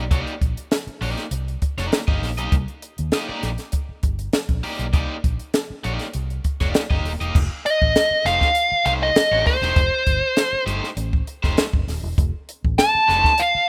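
Funk at 99 BPM with a sly, funky mood, this brief cut from a longer piece sets a bright, overdriven semi-hollow guitar over a dark, foam-muted fingered bass and a dry, punchy cocktail drum kit with a high-tuned snare, moving from a rootless Cm9 to F9 at 7.4 seconds, where a nasal, up-front lead guitar with a parked wah enters at 7.7 seconds, all in a rough home demo mix with small room ambience.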